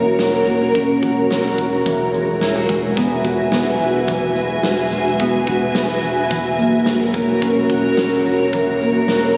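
A blurred, detuned granular cloud pad with a slow attack and its own built-in reverb sits up front, holding sustained chords that move from F#/E to Eadd9 at 1.9 seconds and back at 6.3 seconds, in this dreamy, floating dream pop excerpt in E lydian at 108 BPM, where a mellow, clean electric guitar plays fingered arpeggios through lush chorus and digital delay, a vintage foam-muted picked bass holds a round, dark E1, and a huge acoustic arena drum kit with a punchy kick, medium-tuned snare and hi-hat drives a straight 4/4 beat, all heard as if captured on a phone in a club-like room with moderate shimmer reverb and compression.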